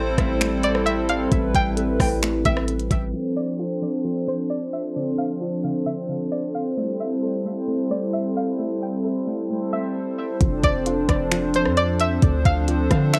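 Hazy, cassette-worn and lightly reverberant, this melancholic cloud-rap excerpt in half-time sets a hollow, flute-like pad and a dark, round pluck arpeggio beneath a twangy, nasal resonator lead that enters at 0.6 seconds, while a boomy 808 bass and a glitchy kit of soft kick, clicky hats, finger snaps and rim clicks drop out near 3.0 seconds for a filter-swept stretch and return at 10.4 seconds.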